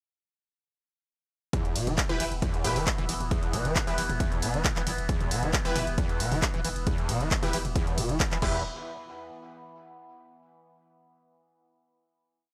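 Driving peak-time techno at 135 BPM in E minor, relentless and industrial, where a heavy four-on-the-floor electronic kick and a programmed kit of hats, clap, ride, low tom and crash drive the drop from 1.5 seconds, with a saturated sub bass rumbling between the kicks and a squelchy, screaming distorted acid line with accents and slides pumping along, joined by bright echoing rave stabs moved in parallel and a detuned overtone-sweeping drone, all on a single E minor chord in a dry, gritty hardware sound until a final hit at 8.6 seconds.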